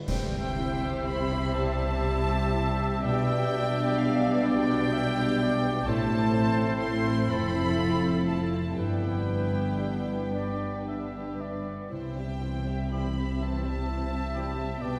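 Classical slow romantic movement for symphony orchestra in a tender, lyrical rubato 6/8 at 38-44 BPM in C major, where a rich, sul tasto violin section sings the high melody over a ringing thumb-plucked harp's arpeggios, a second violin line and a smooth-topped oboe entering at 1.6 s as second lines, a dark, floating viola accompaniment, sustained French horn chords, distant trumpet stabs, woody cellos and rich double basses on the bass, and a close, dry accent of dark clash cymbals with concert bass drum that ends at 2.0 s, all set in a wet concert hall heard from further back.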